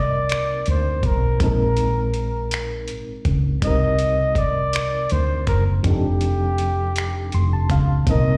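Sultry and late-night, this six-eight R&B passage, cut from a longer piece and heard as a live gig through a venue's PA in a reverberant recital hall, sets a smooth, jazz-style flugelhorn melody with light vibrato and scooped notes over a mellow, tremolo-laced FM electric piano, both touched by slapback echo and the piano adding a fill at 7.0 seconds, while a dark, round, woody fretless bass sits up front and a gritty, overdriven sampler-style drum kit of finger snaps, hi-hat and thumpy kick enters at 0.3 seconds.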